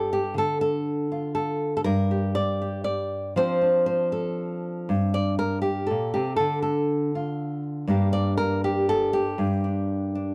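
A dry, close recording with a 1970s studio character places a lone nylon-string guitar up front, touched by light reverb. This is solo fingerstyle folk with a haunting, intimate mood, moving in 3/4 with a loose, rubato feel. The fingerpicked guitar has a bright, classical tone and ranges from G2 up to D5 across the roughly 10-second passage cut from a longer piece. Its harmony opens on Dm, moves to a chordless stretch at 1.8 seconds, then passes through F6, Gm and Dm again before resting on Gm and finally a bare G5 at 9.4 seconds. The spare arrangement keeps attention on the guitar's clear, personal voice.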